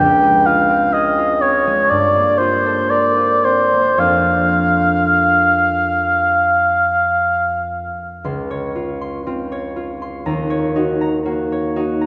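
A mellow oboe with light vibrato sings an up-front melody over bright, ringing, thumb-plucked concert harp in this dreamy, pastoral impressionist classical duo, drifting in a rubato 4/4 at 53-64 BPM through lush chords in F major, until the oboe falls silent at 7.7 s and the harp carries on alone into a shift to Db major at 8.3 s, all bathed in a generous church reverb.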